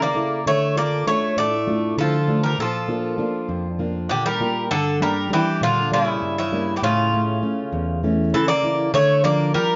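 From the first moment, a metallic, double-strung bouzouki carries the melody up front over a second bouzouki's lower line and a boxy, fingerpicked parlour acoustic guitar, also up front, in this brooding, moody fragment of a Greek folk bouzouki-band piece in a straight 7/8, moving through Dm, Bb, Gm and A back to Dm, with some octave-doubled strings on the bouzoukis, all set in a moderate studio reverb and a dark, warm production.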